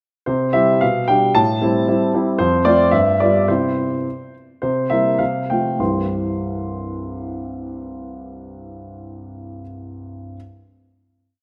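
A graceful, cheerful classical-period piano sonatina in C major and 2/4, moving at a rubato 96-115 BPM and heard as a whole short piece. A solo grand piano, warm, polished and up front with long sustain, carries a single-line melody over repeated chords across a range from C2 to C6, slowing down from 2.9 to 5.8 seconds as the opening section gives way to a brief coda. The piano settles on a final C major chord at 5.8 seconds, held in a wet recital hall reverb.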